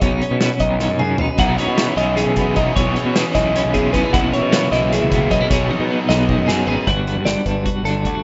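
A warm twelve-string electric guitar spins high arpeggios through digital delay, while a second, bright and twangy twelve-string guitar with tremolo plays clean, compressed accompaniment beneath it in this playful, intricate math rock and midwest emo fragment in 7/8. A fuzzed, overdriven picked bass and a loose acoustic kit with a punchy kick, medium-tuned snare and pumping small-room sound drive it along, with drum fills at 0.8 and 5.7 seconds. A crunchy, double-tracked overdriven guitar riff runs from 1.4 to 6.9 seconds before the chords shift to Gmaj7, all in a rough home-demo mix with light reverb and a dull top end.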